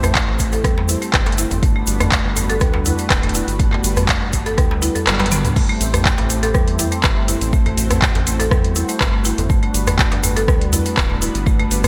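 Up-front afro-pop drums with metallic hats, handclaps, rim clicks and gated-reverb toms drive this earthy, spiritual afro house excerpt, joined by a deep electronic kick, a woody, hard-mallet marimba arpeggiating through delay, a round, dark analog bass, a smooth detuned pad swaying between Am7 and Gmaj7, and a cracking djembe and grainy egg shaker in the background, while the kick drops out from 5.1 to 5.6 seconds for a drum fill and band accent before the groove returns in a bright, 1980s-style digital mix.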